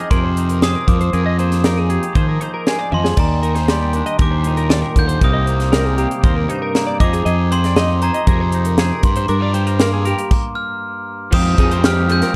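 A dark, dry production frames this wistful, intricate math rock and midwest emo excerpt, where a bell-like glockenspiel carries the melody over a picked, compressed clean guitar playing chorus-tinged arpeggios, a twangy guitar comping through spring reverb, a punchy fuzz bass and an up-front, crisp fusion kit with a high-tuned snare, all moving through jazzy seventh chords, with a drum fill at 2.9 seconds, a stop from 10.3 seconds and a lo-fi, double-tracked garage guitar riff entering in the background at 11.3 seconds.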